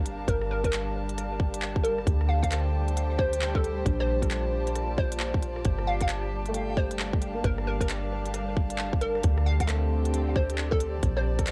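A swung future garage groove at 134 BPM in G minor opens on a round, deep 808-style bass, joined at 0.1 s by an organic electronic kit of handclaps, crisp hi-hats and rim clicks, and at 0.3 s by a tight, tape-warm electronic kick up front, together driving this rainy, nocturnal fragment of a longer piece. Beneath, a dark chamber string section holds soft, bowed sul tasto chords with light vibrato, while a felt-muted upright piano with audible action noise accompanies in the background. From 0.3 s a hollow, detuned square pluck carries the melody through lush chorus and tape echo, and a reversed, dreamy granular texture swells behind it over a Gm7, D7sus4 and Bbmaj7 progression, the whole mix carrying the lo-fi haze of a home cassette recording.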